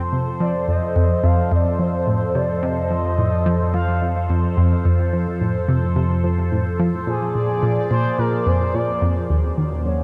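This excerpt of ambient, sequencer-driven space music opens with a swirling, phased analog pad holding sustained chords alongside a round, detuned analog pluck repeating a low riff, both treated with chorus and the pluck also with delay. At 108 BPM in a straight 4/4, the mood is hypnotic and mysterious, with the harmony resting on F before moving to Bb7 at 7.1 seconds. From 0.4 seconds an expressive synth lead sings a smooth, vibrato-tinged melody in a higher register, softly attacked and set further back in the balance, carrying chorus and delay. The pad sits up front with a nasal, evolving, wave-folded character under its slow attack and long release. At 9.3 seconds the chord shifts to Ebm7 as a fat, saturated analog bass enters on a single low note. A huge ambient reverb with a long 7.8-second tail surrounds the parts in a vast, drifting space.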